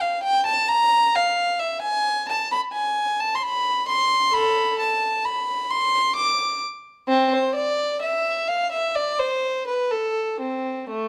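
Solemn and grave, this short excerpt is a baroque-style suite movement for unaccompanied violin, in triple metre with a freely rubato feel. A single bowed violin plays alone from 0.0 to 11.1 s, ranging from A3 up to D6. Its gut-string, period-style tone is reedy and warm, touched with light vibrato, and it sits up front in the mix. The instrument is tuned slightly above standard, at A4 = 441 Hz. A moderate stone-room reverb with a one-second decay surrounds the playing, and the overall production is dark.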